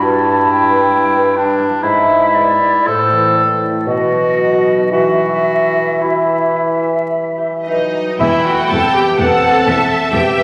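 Vinyl crackle and a wet, spacious scoring-stage reverb frame this yearning, melancholic fragment of a slow romantic orchestral movement in E minor, moving in a rubato 3/4 at roughly 52-67 BPM. A present, up-front clarinet and an airy, hollow flute group carry the second lines over a mellow bassoon, while a bright, ringing concert harp plays arpeggios throughout as the chords pass from Em/G through E7/G# and Am to B7 and back home. Around 7.6 s the strings and brass join in: a focused violin section and an intense, forward viola section come in with dark, distant French horns holding chords, and from 8.2 s a lush, vibrato-rich violin section sings the melody above expressive cellos and distant, even double basses.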